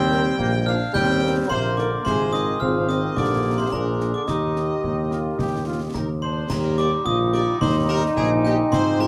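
Spirited and proud, this short cut from a longer military-style march for wind band strides along at 108 BPM in a straight 2/4 in Eb major, moving from Eb through Fm/Ab, Eb/Bb and Bb7 back home to Eb. A distant, roomy trumpet section carries the melody with light vibrato, while a ringing, bell-like glockenspiel struck with brass mallets and a solo euphonium add second lines above and below, and a bright trombone section holds sustained chords in the background. A punchy tuba sits up front on the bass, a smooth-topped French horn section adds tight accompaniment from 0.1 seconds, and a close, dry snare, bass drum and clash cymbals with bright cymbal tone drive the beat under light reverb.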